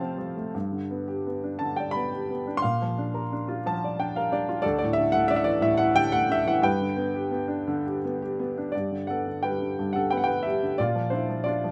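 An intimate, up-front grand piano with audible action noise plays alone in this sunny, warm classical excerpt, a lyrical solo in G major at 88 BPM in 3/4 with a rubato feel, ranging from D2 to C6 through a light reverb, with a fill at 3.3 seconds, harmonies moving through F, G, Bbadd9 and Dsus2, and a new section arriving at 8.7 seconds before closing on Bb.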